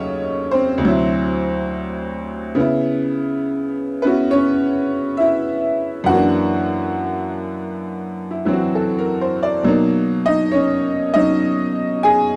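A loose, rubato swing on slow eighth notes gives this moody solo jazz fragment, cut from a longer piece, a lazy, late-night lilt. A lone tack piano, metallic and jangly with a boxy, up-front presence, spans from deep bass notes to bright upper tones, drifting through half-diminished, ninth, augmented and major seventh chords before settling on Bmaj7 at 9.6 seconds. The sound is dry and close, like a 1970s studio recording, with only a light touch of reverb.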